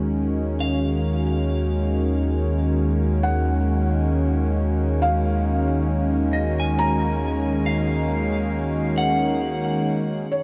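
Ambient music at 68 BPM in 4/4, reflective and serene, this excerpt from a longer piece rests on a single Gbmaj9/Eb chord throughout. A smooth, detuned analog pad with a slow attack and chorus holds sustained chords up front, over a round, deep analog bass sitting on Eb2. In the background a reedy, breathing pedal harmonium drone fades in from the start. At 0.6 seconds a clean, twangy electric guitar begins picked arpeggios high in its range, colored by spring reverb and tape echo. A felt-muted upright piano enters at 3.2 seconds with a soft, intimate melody, its short sustain and audible action noise softened by tape echo. The production is dark and steeped in a huge, wet ambient reverb with an 8.0-second decay.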